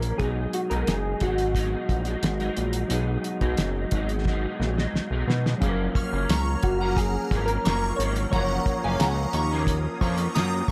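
Indie pop with a bedroom-pop haze, this dreamy, nostalgic passage moves at a relaxed 89 BPM in 4/4 with a straight feel, in F# major, shifting from a B6 chord to F#maj7 as its second section begins. Soft, round electric-piano-like synth keys carry the melody, gently decaying under chorus and slapback echo. Beneath them, an electric guitar through a small old amp sounds slightly broken-up and picked, its chorus and warbly pitch drift adding wobble, while a worn, slightly out-of-tune tine electric piano with light overdrive sits in the background. Up front, a thick, detuned analog bass with a filter sweep pairs with a dry, dark, cloth-damped drum kit of hi-hat, tight kick and fat snare, which plays a fill at 4.3 s. A swirling, phased analog pad slowly arrives at 5.9 s, and a bright, shimmering FM bell with a long halo adds a second line from 6.0 s, all set in a light studio reverb.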